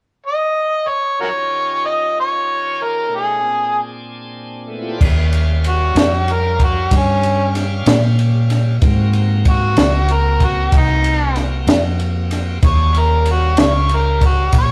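A gritty, amplified harmonica opens this soulful, rollicking slow blues excerpt in 12/8, with light vibrato, scooped notes and tongue slaps, and a bright, shouting tonewheel organ joins at 1.2 seconds with key click, light overdrive and a slow rotary speaker. At 5.0 seconds, as the harmonica launches into its jazz-style solo, a round, punchy hollow-body electric bass and a compact cocktail drum kit with a high-tuned snare, punchy kick, crash and ride and a dark, rolled-off top come in up front. The rough rehearsal-room recording sits in a moderate stone room reverb.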